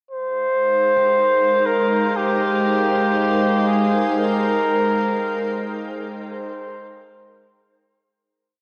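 Ambient piece at 59 BPM in Ab major, peaceful and luminous, resting on a single Abmaj9 chord and lasting about 8 seconds, with a clear, vintage flugelhorn up front playing a motif-based melody of arch phrases between G4 and C5, trailed by a diffuse ambient delay. Beneath it a pure, organ-like pad holds slowly shifting chords with ensemble chorus, a mellow analog drone sits on Ab3 in the background, a glassy texture of drifting overtones holds a high F5, and a fingerpicked concert harp scatters very quiet, ringing notes from 1.0 to 3.3 s. A huge, wet reverb and the warble of worn old cassette tape colour the whole recording, which fades out from 4.2 s.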